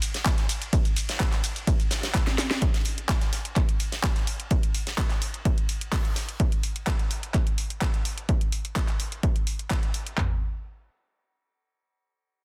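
The punchy analog drum machine stands out most, sitting up front with a punchy kick, handclaps and toms that carry a tape-warm character from being re-recorded in a small room, entering at 0.3 seconds and running to the end of the drums. This is a euphoric, feel-good house excerpt in straight 4/4, cut from a longer piece and opening on a drop that ends with a short drum fill at 2.3 seconds. Around the machine, a layered garage drum kit adds a cracking, overdriven snare along with handclaps, hi-hat, shaker and ride cymbal, playing from the start until 10.2 seconds. Further back, a gated 80s acoustic kit brings an airy, polished big-room sound with bright, filtered cymbals, hats and a medium-tuned snare, dropping out at 6.3 seconds. Studio reverb and a dense, heavily limited modern master give the whole groove a compact, full-bodied finish.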